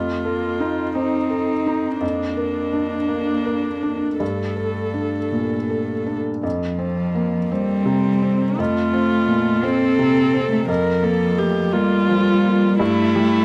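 A felt-muted upright piano sits up front in this short, intimate neoclassical cut, its mellow tone carrying thin-felt softness and audible action noise as it plays accompaniment across a span from F2 to Bb4. A bowed viola, played sul tasto by one player with an airy bow, gentle attack and vibrato, adds its own accompaniment close to the listener. Beneath it, a single dark cello carries a second line in a lower register, played with vibrato and a smooth upper range. The music moves in a slow, rubato 6/8 at 57 BPM in dotted quarters, in F major tuned to A4 = 443 Hz, and the hopeful harmony turns from F7 through Bb/F and Gmadd9 before shifting at 6.4 s to Fsus2 and on to Gsus2 by 12.8 s. All three parts play from the start to 13.4 s, captured as a dry, close studio recording in a 1970s style.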